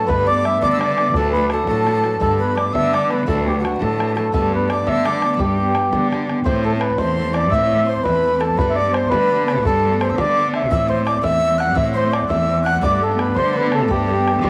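A mellow, round accordion carries the melody up front from the opening with a touch of tape echo, joined at once by a breathy, chiffy flute and a shimmering hammered dulcimer on second lines and a full-bodied picked steel-string guitar with finger squeak, while a rich bowed cello with portamento anchors the bass and a boomy, vintage bodhran drives this cheerful, rollicking Celtic jig at 113 BPM in 6/8 and G major, set in a small room with moderate echo chamber reverb and cut from a longer piece.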